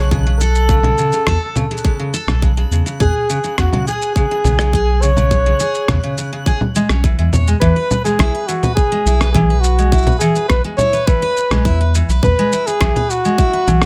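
A close-miked flugelhorn carries the melody up front, its punchy pop-style tone touched with light vibrato and a gritty vintage sampler edge plus delay, giving this playful, hopeful folktronica excerpt its singing voice. Beneath it, a bright, full-bodied steel-string acoustic guitar picks arpeggios through a low-pass filter and its own delay, while a deep, round sine sub bass sits up front with a fast attack and sustained notes. A tight electronic kick, tape-flavored and re-recorded in a large room, anchors the straight groove alongside muffled, pitched-down electronic congas, shaker and rim click with a compressed, sampler-style character. In the background, a reversed, granular swelling texture adds a dreamy shimmer until about 7.6 seconds, when the harmony moves from F#m and C#m to a settled E major chord. Light reverb gives the whole mix a gentle sense of space.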